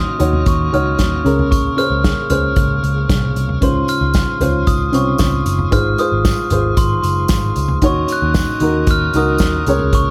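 A small, intimate room surrounds this hopeful, anthemic piano-driven pop excerpt at 114 BPM in 4/4. A woody, slightly detuned upright piano sits up front over a round, foam-muted picked electric bass and an unplugged kit played with bundle sticks that comes in at 0.2 s, while a bell-like glockenspiel struck with soft plastic mallets carries the melody. A piping tonewheel organ with a fast rotary speaker holds sustained chords in the background, a jingly tambourine joins at 3.9 s, and the harmony moves through Ebm7, Bbm7/Db, Dbmaj7 and Ab6 before returning to Ebm7.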